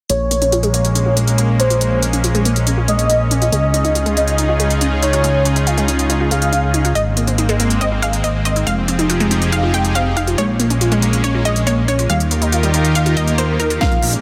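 A straight four-four pulse of cracking, overdriven snare and smooth hats drives this emotional, soaring uplifting trance passage, where a fat, wave-folded analog bass sits up front beneath a lush supersaw pad and a bright unison pluck arpeggio under a filter sweep, all pumping to the sidechain, while a velvety, chorused synth lead carries a second line until a punchy pluck melody takes over at 7.0 seconds, and a very quiet riser at 13.2 seconds leads into a drum fill with a heavy kick at 13.8 seconds.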